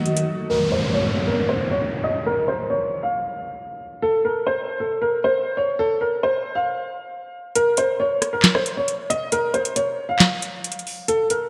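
A worn, boxy baby grand piano carries an eerie, dark melody up front through tape echo and a filter sweep in this half-time trap hip hop excerpt at 136 BPM, opening over a brief cloudy, detuned granular pad and a booming analog drum machine hit, with an electronic downlifter from 0.5 to 4.0 seconds before crisp snare, handclaps, rim click and metallic hi-hats return at 7.6 seconds, all soaked in a lush hall reverb.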